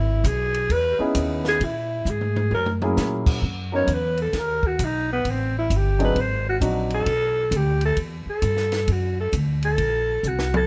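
A raspy, growling alto saxophone with vibrato and plate reverb opens this relaxed small-group swing and bop excerpt at 132 BPM in 4/4, over woody, thumpy pizzicato upright bass on gut strings, with a dry cocktail drum kit of dark cymbals, high-tuned snare and tight kick joining almost at once. A warm concert grand piano with deep bass enters at 1.0 seconds to comp through chords such as C#m9, F#7 and Am7, and the drums add a couple of fills. The saxophone, up front yet roomy, moves into its solo at 3.4 seconds, while the piano drops out at 7.1 seconds.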